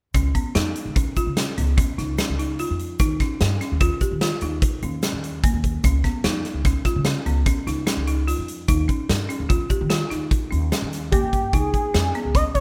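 An up-front big rock drum kit with a tight kick and medium-tuned snare drives this bright, intricate progressive instrumental in 7/4 at 148 BPM in Db mixolydian, where a woody, growly pizzicato upright bass and a dry, rustic hard-mallet marimba playing arpeggios with slapback echo move over Db and Eb7 chords, a grainy tube shaker sits very quiet beneath, and a shimmering, nasal pulse-width lead with chorus, vibrato and portamento enters at 11.1 s just before the excerpt turns to Db7, all in a rough home demo mix with light reverb.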